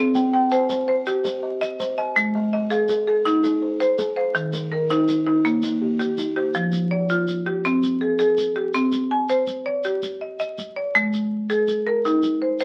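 Rippling and hypnotic, this short cut from a longer piece is a southern African traditional, mbira-style interlocking cycle in a straight 12/8 at 109 BPM, set in an F equiheptatonic tuning. A marimba played with hard mallets carries the arpeggios up front, its padauk bars sounding woody, bright and percussive in a close, dry, full tone. Beside it, a buzzing kalimba adds soft, hollow, fingertip-plucked arpeggios over the same range before dropping out at 6.9 seconds, leaving the marimba and shekere to carry the cycle. A grainy shekere sits quietly beneath both. The harmony moves through Cm, Ab and Eb, then Fm, Cm and Ab5. The whole is heard through a moderate club reverb and the crackle of a very old 78 rpm record.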